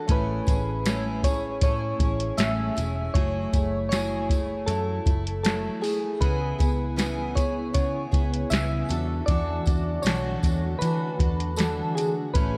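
Indie pop with a bedroom-pop haze, this wistful excerpt moves at an unhurried 78 BPM in a straight 4/4, cycling through Amaj7, F#m9, C#m7 and E9sus4. Soft, mellow synth keys with a round, electric-piano-like tone carry the melody, coloured by analog chorus and tape echo, while a bright, full-bodied picked steel-string acoustic guitar accompanies with audible finger squeak, its chorus and warbly pitch drift adding a seasick charm. Underneath, a dark, foam-muted vintage electric bass gives a punchy low end, and a soft analog rhythm box supplies a deep kick, tonal snare and metallic hats, with a jingly tambourine tucked far in the background. At 7.6 seconds an ethereal, very quiet pad enters with an octave-up shimmer, sustaining chords behind the other parts. The whole mix is dreamy and soaked in a moderate church reverb, giving the recording a distant, hazy glow.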